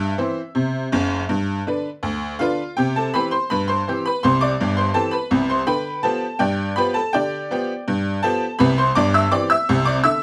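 A straight 2/4 pulse at 82 BPM drives this cheerful, jaunty ragtime piano fragment in C major, cut from a longer piece and tuned to A4 = 441 Hz. A solo tack piano plays the whole 10.2 seconds, its metallic, jangly tone and short sustain sitting up front across a span from F#1 to E6. The harmony moves from C/G to G, then a new section at 2.8 seconds passes through C and G7 before resolving to C at 8.6 seconds, all in a small room with moderate reverb and a dark production.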